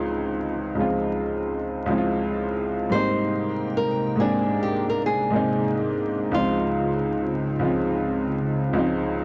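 Nostalgic and mellow, this lo-fi hip hop fragment drifts at 70 BPM with a lazy swing in Db lydian, moving from Dbmaj9 to Abmaj9 and back. A clear, woody upright piano sits up front with a worn, slightly detuned character, while a boxy, fingerpicked flamenco guitar carries the melody until 7.4 seconds. A hollow, flute-like pad with a slow attack and ensemble chorus rises beneath them from 2.9 seconds, all set in a dry, gritty recording with light reverb and vinyl crackle.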